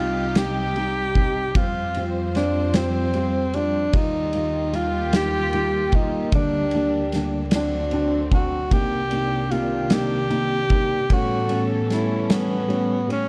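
Dramatic and aching, this excerpt from a six-eight pop ballad moves slowly at 50 BPM in a straight 6/8 feel, its harmony drifting from C minor through suspended and added-ninth colours to a closing A7. Up front, a breathy tenor saxophone carries the melody in a jazz style, with scooped notes, light vibrato, a smooth top and tape echo. Behind it, a felt-muted upright piano supplies intimate accompaniment, its thick felt and audible action noise giving a hushed, mellow character. A lush studio string section holds sustained bowed chords with a woody, close quality, while a French horn section with soft attacks sits in the background on a second line. A loose indie drum kit enters at 0.4 seconds with a punchy kick, medium-tuned snare and dark ride cymbal, its pumping room sound and rolled-off top placed up front. The production is dark and warm, framed by light reverb and small room ambience.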